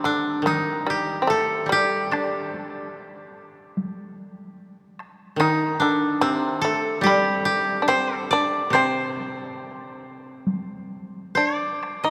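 Meditative and solitary, this short excerpt of Japanese chamber music drifts in free rubato around 65-75 BPM in 4/4 and the C kumoi mode: an up-front, woody koto carries the melody while a buzzing, fretless, plectrum-plucked shamisen adds a percussive second line, a second fingerpicked koto gives a dry accompaniment until 11.3 s, and a hard-stick taiko ensemble sits close but in the background, all set in a cavernous cathedral reverb.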